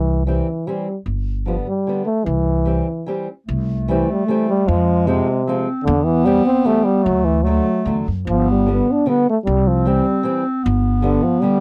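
This is a dry, close recording in a 1970s studio style, set in a booth with a short, moderate ambience. It is a festive, jolly piece of alpine folk dance-band music in three, with a light swing, taken from a longer performance. A warm euphonium carries the melody up front in a classical style, over a growly, woody pizzicato upright bass on steel strings that sits just as close. A boxy, fingerpicked old ladder-braced acoustic guitar joins at 0.3 s with a quieter accompaniment, and a dark clarinet enters at 3.5 s with a second line, also in a classical style. The harmony moves simply between major chords, with a brief turn to F minor at 4.7 s adding a touch of color before the progression returns to C and closes on G.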